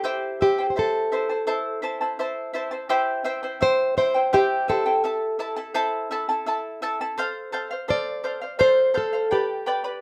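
Earthy and melancholic, this Andean folk excerpt moves at 84 BPM in a straight 3/4 in A minor, with a warm, classical nylon-string guitar carrying the melody up front over a bright, shimmering charango accompaniment whose double strings include some octave-doubled courses. Both instruments are fingerpicked and play throughout, captured with close, detailed microphones in a moderate studio reverb. The harmony shifts from C to A minor, then settles at 2.9 seconds into a passage that travels through C, A minor, F and G.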